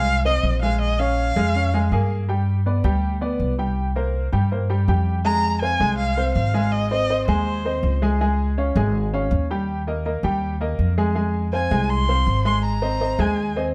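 Salsa in F minor at a driving 162 BPM, this passionate excerpt pairs a focused, bowed erhu melody, played with vibrato and portamento under plate reverb, against a present baby grand piano and a woody, thumpy pizzicato upright bass, all up front in a dark production with light reverb. The erhu plays in short phrases, entering at 0.0, 5.2 and 11.5 seconds, while the piano and bass carry on throughout. The harmony moves from Fm7 and Bbm7 through G and C5 before settling into a Fm, Ab, Db, Eb cycle in the second section.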